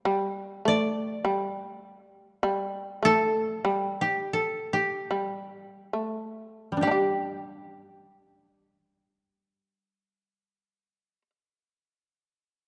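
A dark, warm production places the instruments up front in a moderate concert hall, with reverb lingering for about 2.0 seconds. This calm, austere fragment of Japanese chamber music is in 2/4 and moves in a free rubato between 32 and 52 BPM, tuned to A4 = 441 Hz. The shamisen opens as a second line, its fretless, plectrum-plucked tone powerful, percussive and buzzing. Almost at once a koto takes the melody in a higher register, its fingerpicked voice dry and woody. The pulse slows from 1.2 to 6.8 seconds, and as a new section begins around that point a second koto enters with a softer accompaniment lower down. All three parts play together until the fragment breaks off at about 11 seconds.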